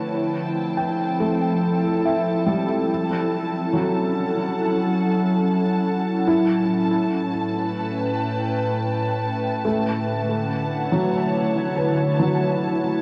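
A straight, unhurried 4/4 pulse carries this peaceful, luminous ambient piece, cut from a longer work, where a glassy FM pad sits up front with slow-blooming, chorused sustained chords moving through Fmaj9, F#m7, A9 and Dmaj9. Beneath it, a felt-muted upright piano plays soft, intimate arpeggios with audible action noise and a touch of delay, while a smooth, lightly vibrato-tinged violin section holds a high A5 and fades in across the full 13 seconds. The whole recording is bathed in a huge, wet ambient reverb and the worn, warbling pitch drift of old cassette tape.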